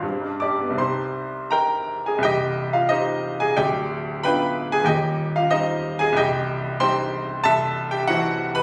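A classical romantic character piece for solo piano in C minor, this bittersweet, brooding fragment cut from a longer work moves in a rubato 2/4 at 78-97 BPM, its clear baby grand sounding natural and up front with a short sustain across a range from C1 to F6. The harmony runs from G7 to Cm before shifting into a new section at 2.2 s and closing on Am/C, all captured on a phone in the room with light studio reverb and compression.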